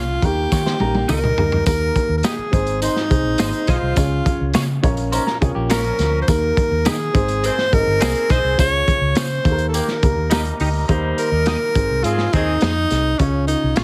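Uplifting and danceable, this uptempo 1960s-style soul excerpt at 104 BPM in Eb mixolydian puts a breathy, close-miked tenor saxophone up front on the melody. It is supported by a woody, boxy upright piano, a round, foam-muted fingered electric bass, a crunchy breakbeat kit with a tight kick and gritty, rolled-off top, and a jingly tambourine. Two clean electric guitars with chorus play background stabs and a riff at 0.5 and 5.1 seconds, a punchy horn section adds a second line from 2.8 seconds, and the whole is heavily compressed with little reverb for a radio sound.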